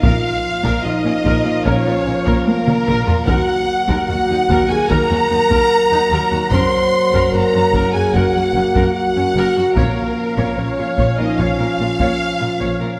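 Bathed in wet scoring-stage reverb, this dramatic, heroic cinematic orchestral excerpt in Bb minor moves at 74 BPM as lush, silky-topped violins carry the melody over a darker second violin line, focused distant violas, dark roomy French horns and bright tight trombones holding sustained chords, background cellos and biting double basses on the bass, and heavy-stick taiko drums that break into a fill at 2.5 seconds, all passing through Bbm, Ebm and Gb before returning to Bbm.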